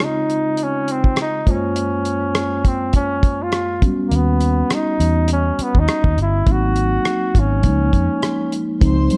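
Over a lightly swung 16th-note groove in 4/4, a damped, dry 1970s-style drum kit of hi-hat, tight kick and rim click sits up front beside a mellow tine electric piano, setting a smooth, lush soul mood as a vintage flugelhorn with light vibrato carries the melody. A round, foam-muted fingered electric bass joins at 4.1 s, and the chords move from Dbmaj9 through Gbmaj9#11 and Eb7alt to Ab7 before settling on Db6. A rich, bowed string section enters high at 8.8 s, and very quiet ringing congas arrive at 9.1 s, all wrapped in a dark production with light reverb and small room ambience.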